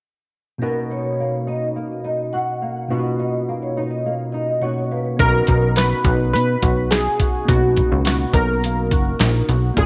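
Dreamy and sunny, this indie and bedroom pop excerpt at 105 BPM in B major opens on a Bmaj7 with ringing, metallic vibraphone through ensemble chorus and tape echo, a dark, boxy flamenco guitar with finger squeak and warbly pitch drift, and a worn, slightly out-of-tune tine electric piano with cassette tape colour, before a round, detuned analog keys melody, a punchy, funky, plucky analog bass and a gritty, compressed sampler-style drum kit with thumpy kick arrive at 5.2 seconds, all set in light reverb.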